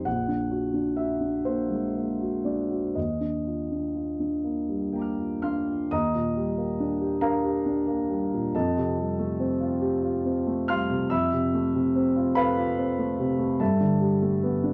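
Hazy and luminous, this brief impressionist solo piano passage, cut from a longer piece, unfolds in a rubato 6/8 on a concert grand with deep bass, an open tone, long sustain and an up-front presence, its lush chords such as Ebmaj9 and Fadd9 shifting into a new section at 5.9 seconds, all bathed in moderate studio reverb and the worn, warbling pitch drift of old cassette tape.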